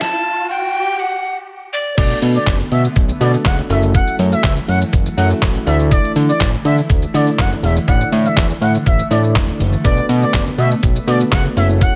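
Dance-pop in B minor at 122 BPM, this energetic, driving excerpt opens with a build-up in which a breathy, hollow alto recorder with chiff and vibrato carries the melody through delay, alongside a brief electronic riser over a thumpy, sampler-style 8-bit drum machine with handclaps, shaker and crash. At 2.0 seconds the drop arrives: a fat, saturated, nasal analog bass sits up front, a smooth portamento lead sings with chorus and delay, and a clean, bell-like tine electric piano and a soft, airy pad in the background pump with sidechain. The harmony moves through Bm7, F#m7 and Dsus2, all inside a digital ambience.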